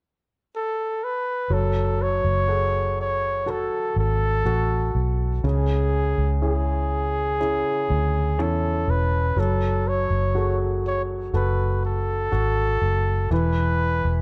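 A close-miked flugelhorn with scooped, jazz-style notes opens this slow, melancholic and heartbroken pop excerpt in F# minor at 0.6 seconds, joined at 1.5 seconds by an intimate concert grand piano with audible action noise and long sustain and a round, punchy, foam-muted electric bass sitting up front, all moving through F#madd9 and C#m in a dark, tape-saturated studio room.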